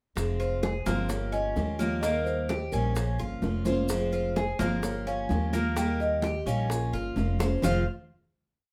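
A woody, thumpy upright bass sits up front in this danceable, nostalgic Cuban son and guajira piece, playing a pizzicato tumbao on gut strings that anticipates the chords. Over a montuno vamp cycling through a minor progression, a marimba with soft mallets on rosewood bars carries a round, mellow, motif-based melody. From 0.4 seconds the Cuban tres adds a metallic, arpeggiated guajeo on double strings, some of them octave-doubled. A bright, full-bodied steel-string acoustic guitar strums with muted slaps and audible finger squeak. In the background, high-tuned congas ring with slaps and open strokes, tight bongos play steady eighths with soft hands, and grainy maracas sound close and dry. A fill at 7.4 seconds leads into a final chord at 7.6 seconds, set in a moderate studio reverb.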